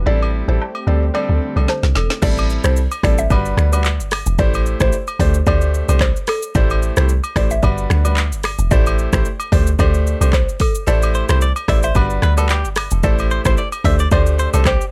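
A smooth, detuned analog pad and a dark, round log drum bass open this mellow, swung afrobeats excerpt in A dorian at 111 BPM, joined almost at once by a woody, mallet-like synth pluck melody washed in chorus, phaser, digital delay and plate reverb, polished concert grand piano accompaniment, and close, acoustic agogo bells and woodblock, before an electronic afro-pop drum kit with a deep kick, warm hats, snaps and handclaps enters with a fill at 1.7 seconds as the pad drops away, and a bright, twangy clean electric guitar riff with digital delay arrives at 10.9 seconds over the cycling Am7, D7sus4 and Gmaj7 chords.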